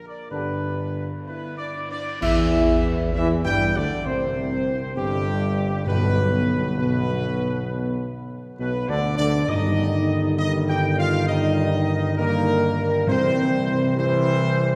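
Classical ceremonial fanfare at a stately 66 BPM in 4/4, triumphant and majestic, with a clear, close-miked trumpet section carrying the melody up front while a dark, distant French horn section, a trombone section and a mellow, roomy tuba hold sustained chords and bass beneath. Bright clash cymbals and concert bass drum mark a band accent at 2.2 seconds as the harmony moves from G to C, and articulate timpani struck with hard mallets join at 5.9 seconds on a shift to B minor, later passing through E-flat over G before returning to C. A heavy church reverb places the ensemble further back in a resonant space, and this short cut is taken from a longer piece.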